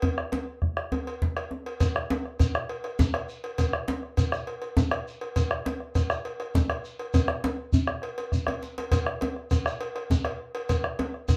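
A round, up-front bombo anchors this earthy, festive West African drum ensemble, setting a 12/8 pulse at 135 BPM counted in dotted quarters with a straight feel. Beside it the djembe sits close and deep, struck with hard hands and heard in a small room, while a metallic cowbell rings at a lower level from a live space. At 1.8 seconds a grainy, mellow shekere joins from further back, sounding distant in a larger room, and the music moves into its second section. A brief drum fill breaks in between 8.3 and 8.9 seconds before the groove carries on. Moderate studio reverb gives the ensemble a natural sense of space, and the recording is cut from a longer piece.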